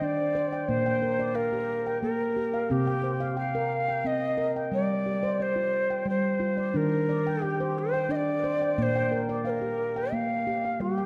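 A breathy cedar flute with vibrato and tape echo carries the melody over ringing, dark handpan arpeggios from the very start of this gentle, hypnotic world-meditative passage in a straight 3/4 at 89 BPM, moving between Eb and Bb chords with both instruments up front in a wet echo-chamber reverb.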